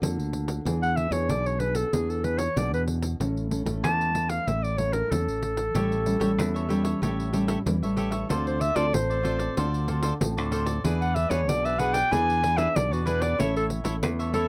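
A straight 4/4 samba-and-choro groove is set by a jingly, hard-handed pandeiro, a bright, direct fingered electric bass, and a full-bodied, thumb-plucked nylon-string guitar with audible finger squeak. From 0.8 seconds a breathy clarinet carries the nostalgic yet lively solo melody up front, clear and jazz-inflected, with light vibrato and a soft subtone, while at 5.7 seconds a crisp, picked cavaquinho joins the accompaniment. The close, dry 1970s-style studio sound has a touch of light reverb, and the passage is cut from a longer piece.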